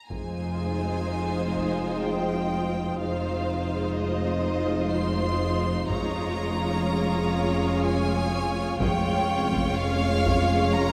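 A clear violin section opens this tense, eerie passage of suspense film score, carrying a smooth, vibrato-rich melody between Eb5 and C6 in a slow 3/4 at 62 BPM in F minor. Almost at once a distant chamber violin section adds a focused second line beneath it, while a lush viola section supplies accompaniment and a mellow, vintage-toned French horn section holds sustained chords, both in the background. The low end rests on a bright, intense cello section on F2 and a rich double bass section on F1, with a taiko ensemble struck with hard sticks giving the slow pulse a weighty, band-limited thud. A grainy, flickering granular texture with its own built-in reverb fades in at 0.4 seconds, its detuned sustain adding an unsettled shimmer behind the orchestra. The harmony moves from Fm7 to Db/F at 5.9 seconds, where a very quiet, close violin section joins high above as a faint texture. The whole ensemble sits in a moderate scoring-stage reverb, and the passage is cut from a longer piece.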